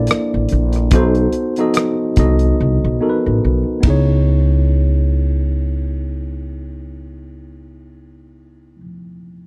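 A worn, slightly out-of-tune tine electric piano, lightly overdriven through its built-in speakers, provides the accompaniment in this brief late-night, introspective neo-soul and R&B excerpt at 72 BPM with a lilting 16th-note swing, moving through lush extended chords. Up front beside it, a woody, bright pizzicato upright bass on steel strings holds the low end, while a damped 70s drum kit with dark cymbals, a tight kick and a rolled-off top plays hi-hat, ride and rim click, adding a fill from 2.6 seconds before dropping out at 4.1 seconds. The sound is dry and close, like a 1970s studio session.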